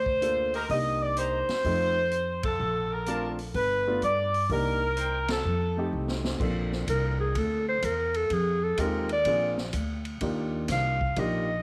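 Big band swing in Bb major at 126 BPM, this energetic excerpt opens with a bright, up-front saxophone section carrying the melody over woody pizzicato upright bass, a warm concert grand piano and a punchy swinging drum kit, while a soft-attack trumpet section adds background stabs with slapback echo, band accents land at 2.4 and 5.2 seconds, and after a drum fill a clear clarinet takes a solo with vibrato and scooped notes from 6.4 seconds, all set in moderate plate reverb and small room ambience.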